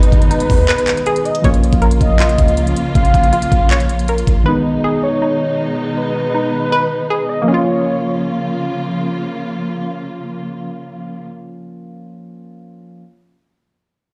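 Brooding half-time trap excerpt in which knocking kick, crisp hats and handclaps with gritty vintage sampler texture and a deep, boomy 808 drive the opening until about 4.5 seconds, while a velvety detuned synth lead with vibrato and tape echo, a hollow, nasal square pluck playing bouncy arpeggios, soft round electric-piano-like keys and a dark, lush bowed string section carry the shadowy harmony on into a big, reverberant room.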